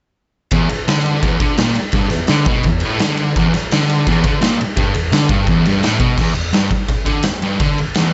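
Garage rock with a rowdy, raw edge, this brief cut from a longer piece pairs a double-tracked fuzz guitar riff, picked low and up front, with an oversized, low-tuned acoustic drum kit that pumps in a big room, its boomy kick, medium-tuned snare, dark crash and ride cymbals sounding saturated and gritty, all under light reverb and shifting into a new section at 6.2 seconds.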